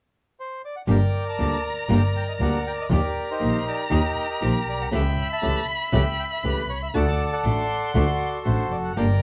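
A reedy, bright bandoneon sings the melancholic, tense melody up front and dry in this rubato tango fragment, entering at 0.4 seconds and joined at 0.9 seconds by a distant bowed violin line full of vibrato and portamento, dark fingerpicked flamenco guitar accompaniment, and a rich, close bowed double bass with soft attack and sliding expression, all within a dark production with light reverb.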